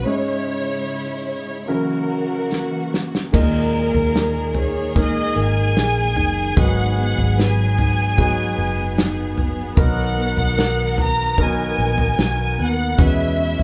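Pop ballad at 74 BPM, emotional and heartbroken, in which a lush, vibrato-rich violin section carries the melody over an intimate grand piano with audible action noise, soft-attack symphonic strings holding sustained chords in the background and a dark, round, foam-muted electric bass, before a dry, up-front 70s drum kit enters with a fill at 2.5 seconds and a full-bodied fingerpicked steel-string acoustic guitar adds background arpeggios from 3.3 seconds, all bathed in wet studio reverb as the band plays live together in one room.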